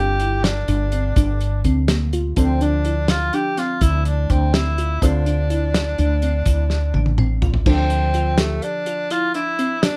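A distant tenor saxophone with light vibrato carries the melody over intimate grand piano, chorused glassy wavetable arpeggios and a round, hollow-toned fretless bass in this driving, brooding progressive piece in 11/8 at 249 BPM in D minor, moving from Gm7 to Dm7. A fat-snared soul drum kit with dark cymbals enters at 0.2 s and a grainy shaker follows at 1.2 s, while a drum fill at 6.7 s leads into a saxophone solo at 7.7 s and the bass stops at 8.6 s, all within light reverb.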